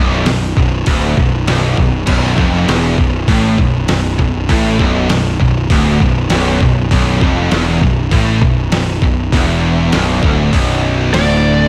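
A straight 4/4 pulse at 99 BPM drives this relentless, heavy metal excerpt in B minor, held on a single Bm chord, with a gritty, pitched-down, compressed sampler-style drum kit up front supplying a thumpy kick, medium-tuned snare, hi-hat and crash cymbal from 0.1 s. Three bright, picked distorted guitars grind out a low riff in the background (one high-gain, one tight, and one double-tracked with slapback echo) while a fuzzy, overdriven electric bass sits up front beneath them. At 11.1 s a dark, high-gain lead guitar enters on a single high note, all within a lush hall reverb that lends a big arena sound.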